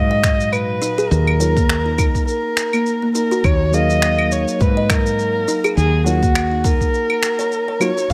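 Earthy and mystical, this organic downtempo excerpt with a light swing features a dark, up-front bowed kamancheh melody full of vibrato and portamento and trailed by tape echo, over a mellow tine electric piano that pumps with sidechain and echoes. Beneath them sit a round, punchy fretless electric bass with tube saturation and the same sidechain pumping, and soft, woody fingertip-plucked kalimba arpeggios with tape echo that enter at 0.1 s. Layered electronic kick drum, finger snaps, shaker and claves arrive at 0.2 s, and the whole piece sits within light reverb and digital ambience.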